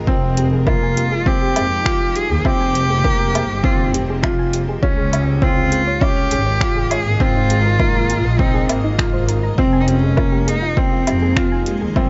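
Hypnotic and intimate, this piano and strings electronica excerpt sets an expressive, up-front solo cello melody with vibrato and portamento over a felt-muted upright piano riff with audible action noise, a bowed chamber double bass section pumping to the sidechain, a punchy overdriven electronic kick, a deep house kit of finger snaps, metallic hi-hats and woodblock entering at 0.4 seconds, a dark, round pluck arpeggio with chorus and tape echo in the background, and a very quiet, cloudy granular pad of sustained chords, all in a small room with a muffled top end.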